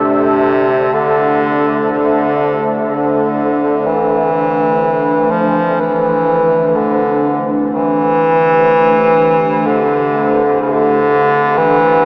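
Bathed in a huge, eight-second reverb yet heard through a small-speaker sound, this dark, desolate ambient passage drifts in free time in A minor, cut from a longer piece. A clear, vintage bass clarinet carries a solo melody between C3 and F3 up front, trailed by a diffuse ambient delay. Beneath it, a deep, moody pad of detuned sawtooth and sub-octave tones with chorus holds a sustained A minor chord throughout, and the music moves into a new section at 3.8 seconds.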